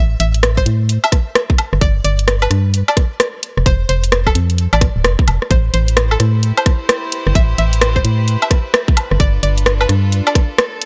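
UK garage in a bouncy, late-night two-step groove at 130 BPM in A minor, cut from a longer piece, where a bright, twangy resonator pluck with chorus and digital delay carries the melody over a hollow, dark organ-like FM bass and up-front overdriven garage drums with hi-hat, rim click, woodblock and a tight kick, until a rich, reedy chamber violin section with light vibrato and sidechain pumping enters at 5.5 seconds with sustained chords.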